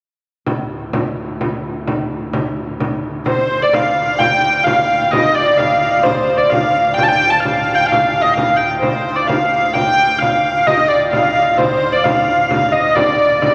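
Medieval dance in triple time with a driving, mysterious mood: a thick pipe organ drone sits low in the background and a small, bright frame drum played with soft hands keeps pace from the start, and at 3.3 seconds a dark, woody hurdy-gurdy enters up front with the melody, all bathed in a long, wet cathedral reverb.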